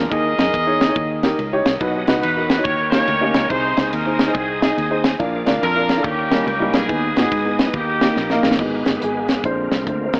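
Fervent and soulful, this uptempo gospel excerpt swings at 142 BPM in 4/4, with a roomy, jazz-style horn section carrying the melody through dub echo over a dark, woody upright piano that also echoes, a punchy, foam-muted fingered electric bass, and a tight, dry funk drum kit with a high-tuned snare, while a reedy tonewheel organ with key click, chorus vibrato and fast rotary speaker slips in at 1.8 seconds to hold background chords, and after a drum fill at 8.2 seconds the horns drop out and the piano takes a short solo from 8.6 seconds, all in an echo-heavy mix with spring reverb and an AM radio tone.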